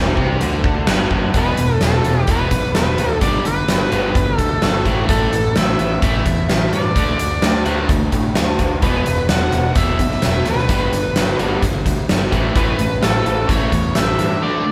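This classic rock excerpt, cut from a longer piece, has a brooding, swaggering mood and a straight, steady four-beat drive. A huge arena drum kit sits up front, its fat snare and punchy kick ringing in a hall, with hi-hat keeping time from 0.2 s. Two picked rhythm guitars churn out riffs in the background, one crunchy and overdriven and the other distorted and compressed, both with a bright edge. Beneath them, a fingered electric bass adds a growly fuzz tone. At 1.4 s a smooth, warm overdriven lead guitar enters with a melody in its upper register, over chords moving through E5, G, A5, D5 and Esus2. A moderate large-studio reverb gives the sense of a band playing live together in one room.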